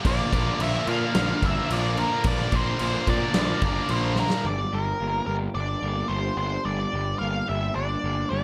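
This brooding, angsty stretch of quiet-loud alternative rock, cut from a longer piece, opens on a heavy wall of three bright, picked distorted guitars playing a riff over a Bb chord, one of them scooped and very quiet, another tight and double-tracked, all sitting in the background. Up front, a dark octave-fuzz lead guitar carries the melody with a slapback echo, joined by a growly, overdriven fuzz bass that sounds both direct and amped. A big acoustic drum kit drives this first part with a punchy kick, a medium-tuned snare and crash cymbal, heard distant and roomy in a bright stone room with a rolled-off top. A drum fill at 4.2 seconds closes that passage, and at 4.4 seconds the riff guitars and drums stop as the harmony moves to G minor. From there a clean, compressed, twangy twelve-string electric guitar plays phaser-coloured arpeggios in the background beneath the lead and bass, all under a light reverb, through to 8.4 seconds.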